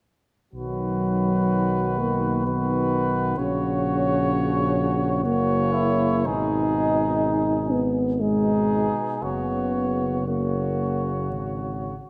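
Tender and lyrical, this hymn-like classical fragment for brass band in 3/4 unfolds with an uneven, rubato pulse as a punchy cornet carries the melody with light vibrato over a distant, roomy flugelhorn second line with a soft attack, a dark euphonium accompaniment that drops out at 11.3 seconds, a warm trombone with vibrato set in the background, and a mellow tuba bass sitting up front, inside a moderate scoring-stage reverb.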